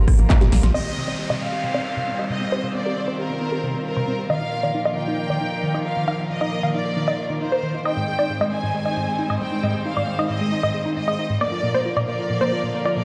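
A straight 4/4 pulse at 135 BPM drives this euphoric, emotional uplifting trance excerpt in C minor, where a punchy sawtooth sequencer bass and an overdriven big-room dance kit of crisp hats, handclaps, rim clicks and snare play only briefly, closing with a drum fill at 0.3 s, while a lush detuned unison pluck melody under a filter sweep, an evolving chorused arpeggio synth and earthy, distant chamber strings pump with sidechain through Cm, Ebsus2/Bb and Abmaj7, a smooth violin section carries a second line from 0.7 s, and electronic downlifter and riser effects sit low in a stone-room reverb.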